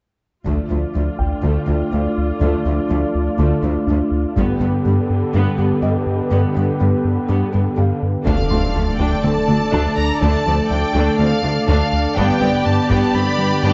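Straight 4/4 taiko hits from hard sticks punctuate this tense, futuristic hybrid orchestral and electronic film cue, cut from a longer piece, where a bold, brassy, detuned analog pad with chorus and a round, deep analog bass carry the Dm-to-G harmony over a clear cello section, a distant, expressive viola section, a tine-like FM pluck playing dark arpeggios and a faint baby grand piano with tape echo, until at 8.3 s an electronic impact lands and lush, vibrato-rich violin sections enter with a melody and a second line, set in a moderate scoring-stage reverb.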